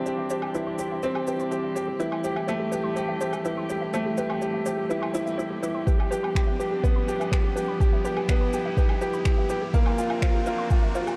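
Steady 4/4 at 124 BPM with a straight feel drives this luminous, hopeful piano and strings electronica cut, taken from a longer piece and built as one rising passage over Cadd9, Am7, G7 and Bbadd9. Electronic shaker, woodblock and finger snaps, overdriven and layered with a small-room character, tick along from the start, and a deep, overdriven electronic kick sits up front from 5.9 seconds. A bright upright piano carries the riff close and intimate, its woody tone, long sustain and audible action noise trailing tape echo. Beneath it, a muted string quartet holds con sordino chords with vibrato and portamento, veiled and dark, pumping with sidechain under a low-pass filter. In the background a lo-fi, detuned pluck spins mellow arpeggios with chorus, tape echo and sidechain pumping, while a riser enters at 5.3 seconds to push the build-up through a dark, warm production with light reverb and digital ambience.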